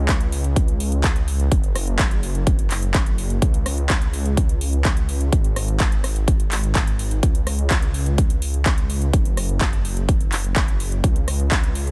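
A straight 4/4 pulse drives this short cut from a longer festival progressive house track, anchored by a punchy, layered electronic kick drum that sits up front in the mix from 0.1 seconds on. Around it, a big-room dance drum kit adds handclaps, a rim click and metallic hi-hats, its produced, layered sound sitting a little further back than the kick. Underneath, a detuned sawtooth bass holds the low end, thick and lush from its unison voices and chorus, with a sine-rounded, mellow body, a fast attack and long sustained notes. Sidechain pumping makes the bass breathe in time with the beat, giving the groove its surging, dance-floor push. A digital ambience surrounds the parts, and the mood throughout is anthemic and euphoric.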